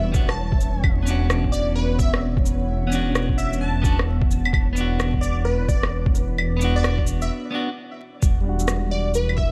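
Future garage at 130 BPM in 4/4, with a swung sixteenth-note feel and a wistful, melancholic mood, this short cut from a longer piece moves from Em7 to Bmadd9/E and back to Em7 at 8.2 seconds. A punchy, catchy plucky unison lead carries the melody from B4 to A5, its detuned sawtooth body given vibrato, lush chorus and analog delay. Beneath it, a dark, picked clean electric guitar plays accompaniment through a low-pass filter, analog delay and sidechain pumping, with a filter sweep arriving at 8.2 seconds. A moody analog pad with slow attack and long release holds sustained chords in the background under chorus, phaser and pumping, while a deep, rumbling detuned saw bass sits up front on E1. A faint, flickering grainy texture hovers until 7.3 seconds, where a brief break begins. The drums pair a muffled, thumpy, pitched-down kick with a layered electronic shaker, rim click and claves, all heard in a dry mix coated in vinyl crackle.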